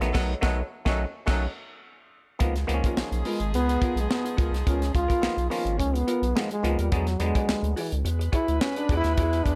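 Funk at 106 BPM in Db mixolydian, gritty and strutting, with a tight drum kit and a round, deep analog bass up front in a small room, a clean, hollow-body jazz guitar tucked in the background, an auto-wah clav adding stringy stabs until 7.8 s, and a warm horn section carrying a second line. After a band accent and a clav fill, a breathy, mellow trombone enters at 3.3 s and plays a close-miked, jazz-style solo with slapback echo until the cut at 9.6 s.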